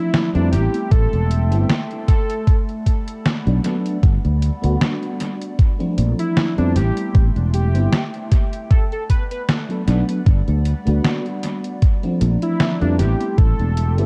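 Washed in light reverb and heavy echo with a cassette-tape haze, this woozy, nostalgic vaporwave excerpt drifts at 77 BPM with a gentle 16th-note swing over a looping progression of Bbmaj9, Am7, Bm7 and Gmaj7. A velvety synth lead with vibrato carries the melody above a dark, soft FM electric piano and a warbling, detuned pad with phaser, while a round, punchy fretless electric bass sits up front. A detuned 8-bit drum machine supplies hi-hat and snare, and a thumpy electronic kick joins at 0.9 seconds, dropping out briefly at 3.3 seconds before returning.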